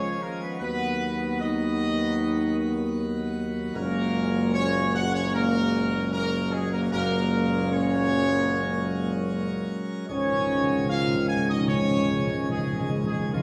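A stately 76 BPM in a straight 4/4 carries this regal, majestic classical passage in F# major, cut from a longer piece. A mellow, distant trumpet section sings the melody over dark French horns and trombones in the background, a brilliant plenum pipe organ with baroque voicing and chiff, and a punchy tuba with light vibrato anchoring the bass. Timpani with medium mallets enter at 10.1 s for a close, acoustic fill, all set in a wet stone room.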